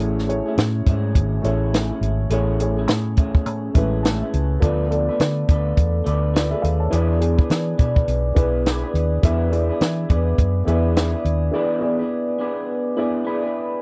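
A sunny, laid-back stretch of indie bedroom pop opens with the whole band at once: a compact cocktail kit, a round foam-muted electric bass, a twangy guitar through a small old amp, and a dark upright piano, moving at 104 BPM in 4/4 with a swung sixteenth-note feel in A major. The drums sit up front with a punchy kick and a high-tuned snare beside the hi-hat, while the amped, vintage-toned bass also stands forward. The picked guitar sounds slightly broken-up, with a lush chorus and a warbly pitch drift. The woody, slightly detuned piano keeps an intimate, mellow presence with audible action noise and long sustain, and it adds a fill at 3.5 seconds as the harmony moves from Amaj7 to Dm6 and E7. Around 11.5 seconds the drums and bass drop out for a break, leaving piano and guitar to carry on until this cut from a longer piece ends at 13.8 seconds. The sound is a dry, close 1970s-style studio recording with little reverb.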